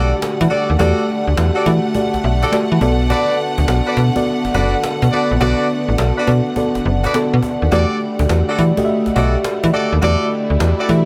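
Bouncy and slick, this short cut from a longer new jack swing R&B piece moves at 104 BPM in E minor with a swung sixteenth-note feel. A snappy, up-front FM bass with a metallic attack carries the low end. A mellow FM electric piano with a round, dark tone and chorus supplies the accompaniment and plays a brief fill between 1.9 and 3.1 seconds. Horns add smooth, jazz-style stabs touched with delay, while a lush, bowed string section with vibrato holds sustained chords beneath. A faint, woody cajon keeps time in a small room, and the harmony moves from Em11 to Bm7 at 2.8 seconds before returning to Em11 at 7.7 seconds.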